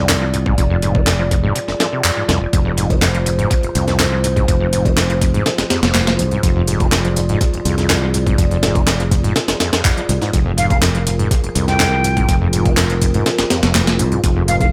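Set in a light reverb, this funky, energetic breakbeat cut from a longer piece rides on a gritty, pitched-up sampler-style break with a thumpy kick and a layered garage kit of handclaps and crisp hi-hats, while a growly fingered electric bass and a squelchy, overdriven acid bass riff with tape echo sit beneath a dark, warbling pad of sustained chords pumping from sidechain, and an airy jazz flute with vibrato and an AM radio sound joins at 10.6 seconds.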